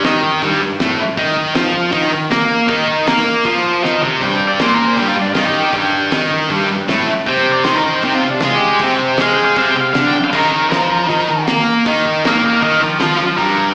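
A thick, bright, double-tracked fuzz guitar sits up front with a raw, swaggering garage rock riff, carrying a slapback echo. A cloth-damped, thuddy drum kit with a fat snare, tight kick, dark cymbals and a rolled-off top plays alongside, ending the opening with a fill at 3.8 seconds. At 4.2 seconds a dark octave-fuzz lead guitar takes a picked solo, and the whole clip sounds like a live gig heard through the venue's PA, with club reverb and a small-speaker tone.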